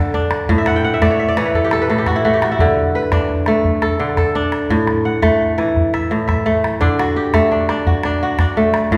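West African traditional string music in D major, joyful and hypnotic at 114 BPM in a straight 12/8, with a bright, ringing, fingerpicked kora spinning crisp arpeggios up front from A2 to G5 and adding a fill between 0.6 and 2.6 seconds, while a small, close calabash keeps percussion from 0.1 seconds, all set in the wet reverb of a recital hall and cut from a longer piece.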